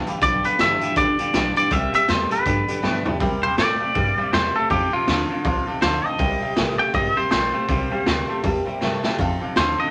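Set in a snug small room with a touch of reverb, this rowdy, rollicking rockabilly excerpt swings along as a gritty, saturated garage drum kit with a boomy kick sits up front beside a woody, thumpy pizzicato upright bass, while a twangy, compressed electric guitar carries the melody over a second electric guitar's phaser-tinged riff, a full-bodied steel-string acoustic is picked in the background with a brilliant upright piano, and a drum fill at 2.8 s ushers in a clean electric guitar solo from 3.2 s.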